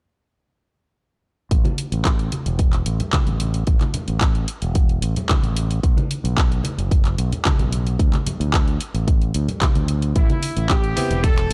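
Nu-disco in A dorian at 111 BPM, this short cut from a longer piece has a sensual, groovy feel and a dark, dry production. At 1.5 seconds a growling fingered electric bass, overdriven and up front, arrives together with a punchy, layered electronic kick and a pop drum kit of finger snaps, handclaps and warm hi-hats. Low-tuned congas with a thick skin sound sit further back, as if heard across a large room. The harmony moves from A5 through B5 and D5 before settling on Am9 at 10.2 seconds, where a tight, clear trumpet section enters with a light vibrato. Just before the close, a bright, clangy vintage electric grand piano with chorused unisons and sidechain pumping adds a brief, cutting stab at 11.0 seconds.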